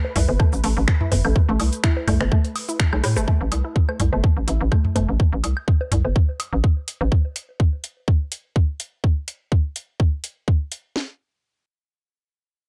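Minimal techno with a hypnotic, quirky, swung feel: during the opening drop a very quiet swarming drone hovers over tape-echoed electronic bongos, toms and woodblock, a squelchy, resonant blip pluck riff with phaser and delay, an up-front hollow, knocking FM bass pumping against the sidechain, a booming analog drum machine with metallic hats, snaps, rim clicks and shaker, and a garage kit's tight kick and cracking snare; a drum fill at 2.9 seconds leads into the main groove, where the drone drops out, the pluck continues until 5.0 seconds, and the two drum sets carry on in dark digital ambience.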